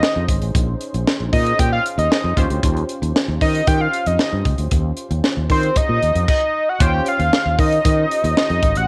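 A light reverb and small-room ambience frame this danceable early-eighties boogie funk excerpt at 115 BPM in straight 4/4, moving from Bbm11 to Eb13 at 2.4 seconds. Up front, a fat, warbling analog lead carries the melody with sawtooth and square-wave tones, a sub octave, vibrato, chorus and slapback echo. A punchy, detuned polysynth comp with chorus and filter sweeps sits in the background, while a tight, acoustic funk kit with a high-tuned snare and a dark, round fretless bass entering at 0.2 seconds drive the groove.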